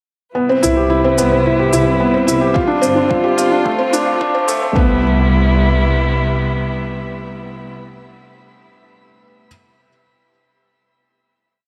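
Piano and strings electronica in C major at 109 BPM, this short, complete piece feels luminous and tender. An up-front, felt-muted upright piano carries a mellow, intimate arpeggiated riff, a 12-step loop drifting against the bar, dressed in digital delay and shimmer reverb from 0.3 seconds until it closes the piece at 9.5 seconds. Beneath it, a muted string quartet, con sordino and veiled, holds dark sustained chords with soft attack, portamento and vibrato, one player per line, pumping with sidechain and bathed in shimmer, while a distant studio double bass section bows an expressive off-beat bass line that also pumps. A tape-warm shaker keeps a restrained pulse, and a layered electronic kick adds a deep four-on-the-floor thump from 2.6 seconds. The opening build rises through a filter sweep over Cmaj7, G7sus4 and Dm7 before landing on a final Cmaj7 chord at 4.8 seconds, all set in the glow of a recital hall reverb.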